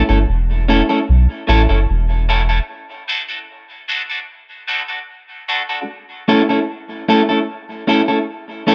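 Dub reggae at a relaxed 75 BPM in 4/4 with a straight feel, this short cut from a longer piece has a spacious, laid-back mood. A clean, picked electric guitar carries the accompaniment throughout, placed up front and sent through a dub echo and a high-pass filter, with a filter sweep running on it until 5.9 seconds. Beneath it, a soft dub sub bass gives a deep, round tone with a fast attack and sustained notes, sitting prominently in the mix before dropping out at 2.6 seconds. From there a break leaves the guitar alone, as the harmony shifts from A to D at the start of the break and returns to A at 5.9 seconds. Light reverb and a digital ambience lend the whole passage an airy sense of space.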